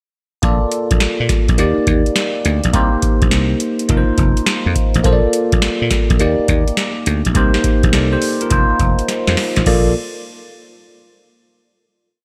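A flirty, upbeat new jack swing tune in Bb major at 104 BPM opens at 0.4 seconds with a booming analog drum machine laying down a hard-swung beat of deep kick, crisp snare, metallic hats and crash cymbal under gated reverb. Alongside it, a dry, growly thumbed slap bass bounces through a swung synth-funk line with muted ghost notes, while a bell-like tine electric piano treated with phaser holds clean chords, adding grace notes and short fills over a Bbmaj7, Ebmaj7, Cm7, F7sus4 progression. A drum fill at 9.1 seconds leads into a final Bbmaj7 chord at 9.7 seconds, all in a light reverb.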